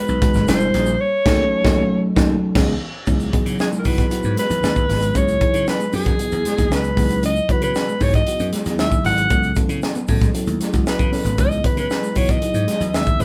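A straight 4/4 groove at 116 BPM drives this slick, nocturnal slice of polished 1980s jazz-funk pop in C# minor, where a crisp fusion drum kit with a punchy kick and high-tuned snare sits up front beside growly slap bass and a grainy tube shaker in the background, a lush, dreamy FM electric piano with a soft pad layer and chorus holds the chords, a dark, clean, compressed electric guitar riff stays very quiet underneath, and a forceful alto saxophone with vibrato and scooped notes carries the melody, with a band accent from 1.0 to 3.1 seconds before the harmony settles onto C#m11, all captured as a band playing live in a small room.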